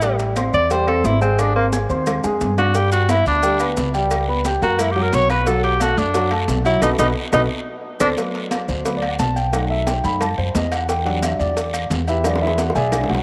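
Danceable and sunny, this Afro-Cuban jazz excerpt opens with a clear, up-front tenor saxophone solo with vibrato and scooped notes over dark, mellow upright piano and thumpy pizzicato upright bass, with background congas, cowbell and bongos, ringing agogo bells and timbales, grainy maracas, distant woody claves and a raspy guiro entering at 2.8 seconds, before the band accent gives way to a piano solo at 8.2 seconds, all set in moderate plate reverb.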